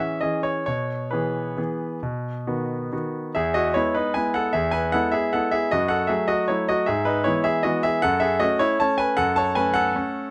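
Close, detailed microphones and a light reverb frame this brief passage, cut from a longer piece, with the piano sitting up front and present in the room. It is a classical piano waltz in E major and 3/4, playful and sparkling, moving with a rubato feel somewhere between 128 and 164 BPM, and tuned slightly low to A4 = 437 Hz. A bright concert grand plays solo throughout, spanning E2 to A5, its polished, brilliant tone balanced by a deep bass and a short sustain that keeps the figures crisp. The opening phrase travels from a rootless Amaj7 through E/B to B before settling on E at 3.4 seconds, where a new section begins. From there the harmony moves to a rich F#m13 at 5.7 seconds, then through E/G# to F#m, and the passage breaks off at 10.3 seconds.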